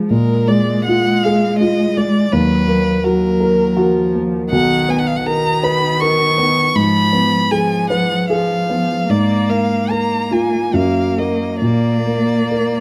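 Solemn and yearning, this fragment of a slow romantic classical movement for piano trio unfolds in a rubato 3/4. An up-front, warm bowed violin carries the expressive melody with vibrato, soft attack and portamento over a cello second line that likewise glides with vibrato and portamento, while a dark, mellow grand piano, also up front and with short sustain, supplies the accompaniment, all heard through close, detailed microphones with light reverb.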